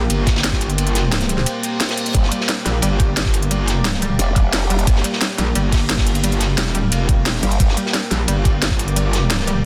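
A metallic, distorted wobble bass drives this dark, tense technical drum and bass excerpt at 176 BPM in G minor, joined from 2.1 s by a growling, formant-filtered bass with sidechain pumping, while a layered electronic kit of cracking snare and crisp hats sits up front, backed by a knocking electronic kick and a gritty, saturated acoustic breakbeat kit with dark cymbals. A deep, evolving sawtooth pad holds sustained chords with chorus and its own reverb, and a warbly, lo-fi pluck with 12-bit sampler grit and delay plays mellow arpeggios in the background. A reverse cymbal rises briefly at 1.6 s, and the dense, heavily limited master gives the whole a heavy, compact weight.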